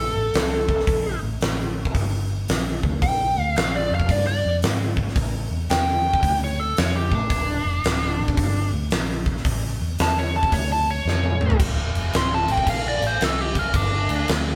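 Heavy and brooding, this swung blues rock power trio excerpt with a southern rock edge moves at 112 BPM in D minor, as a nasal, overdriven lead guitar with a parked wah solos up front over a dark, round, foam-muted fingered bass and a huge arena drum kit with a fat snare, punchy kick and bright cymbals, all caught live in one room with light reverb, with a drum fill at 11.1 seconds leading into a D5 chord.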